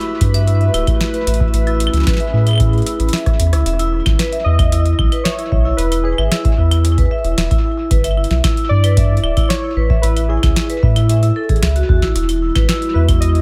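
A dry, echo-heavy mix gives this wistful, glitchy IDM fragment, cut from a longer piece, a close and slightly smeared feel, with dub echo trailing off the drums, the vibraphone and the synth keys. A booming analog drum machine plays crisp snare, metallic hi-hats, claves and rim clicks alongside a deep, tape-warm electronic kick, while a round, dark triangle-and-sine bass with tube saturation and filter sweeps sits up front. A vibraphone struck with medium hard mallets ripples through arpeggios, its ringing, metallic tone roughened by vintage 12-bit sampler grit. At the opening, a nostalgic, warbling pad holds mellow, wave-folded chords with chorus and its own reverb, as a bubbling, resonant texture of detuned sawtooth and random filter steps pumps quietly in the background; both drop out at 3.7 seconds after a drum fill. The second section brings in lo-fi synth keys at 4.4 seconds, a detuned pulse and sawtooth tone with ring modulation and chorus playing a decaying melody, and the hazy pad returns at 12.4 seconds.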